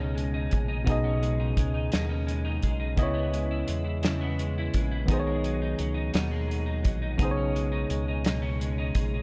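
This slow six-eight R&B piece, cut from a longer work, sits at 57 BPM in B major and carries a warm, intimate mood. A worn tine electric piano, slightly out of tune and played through a combo amp, sits up front with the accompaniment, while a round analog bass blends sawtooth and sine tones into a deep, dark, sustained low end with a fast attack. An acoustic soul drum kit enters at 0.2 s from a small room, pairing a tight kick and medium-tuned snare with hi-hat under a rolled-off top, placed close to the listener. A clean, picked electric guitar plays a second line, its tone given a shimmer by ensemble chorus. The harmony moves from B69 to C#m7 and settles on B6, all under a light studio reverb that keeps the sound cozy and warm.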